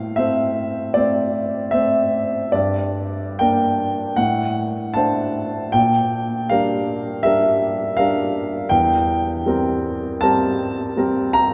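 Bathed in a vast, echoing cathedral reverb, this brief romantic classical character piece features a smooth, vintage-toned solo grand piano placed up front, playing with warm, passionate rubato at 66-84 BPM in 4/4, tuned to A4 = 439 Hz, as it moves from F/A through Gm and D7/A to Gm/Bb before reaching C7/E at 8.7 seconds, when the cut from a longer piece ends at 11.5 seconds.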